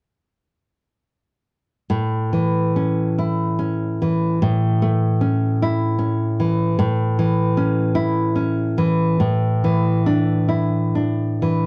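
The recording sounds like it was played back from a worn cassette, with a warbling pitch drift and a light reverb around it. This tender, nostalgic romantic fragment, cut from a longer piece, is played by a solo nylon-string guitar. The guitar enters at 1.9 s and sits up front with a dark, classical tone, fingerpicked between A2 and E4, and small finger squeaks on the strings are audible. The music moves in 6/8 with a rubato feel, so the pulse bends freely. The harmony rests on an A chord before shifting to Asus4 at 9.2 s, and the guitar falls silent at 11.7 s.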